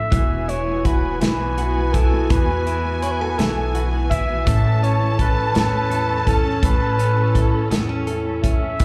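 A flugelhorn carries the melody from the opening moment, its tone smooth with a light vibrato and touched by slapback echo and analog delay. Beneath it, a double-tracked, fingerpicked nylon-string guitar sits in the background alongside a lush bowed string section holding sustained chords, while a woody, growly pizzicato upright bass anchors the low end. At 0.1 seconds a smooth, even violin section adds a high second line with slapback echo, a clean, compressed electric guitar picks arpeggios in the background with echo and delay, and an airy country drum kit comes up front with a punchy kick, medium-tuned snare and hi-hat. The harmony rests on Esus2 before settling onto A at 4.5 seconds. This swaying, romantic pop ballad in six-eight is heard as a live gig through the venue's PA, wrapped in club reverb, and is cut from a longer piece.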